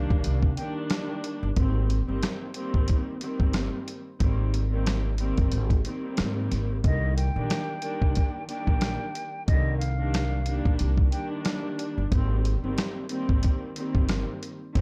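Dry, dark production frames this moody boom-bap hip-hop excerpt in C minor at 91 BPM with a light 16th-note swing, where a gritty, compressed sampler-style drum kit with a thumpy kick sits up front beside a woody, growly pizzicato upright bass, a veiled con sordino string section spreads lush bowed chords with a cassette-tape tinge over Cm7 and Abmaj7, and a pure, hollow silver flute with vibrato and delay sounds briefly at the opening before returning at 6.9 seconds for a short melody.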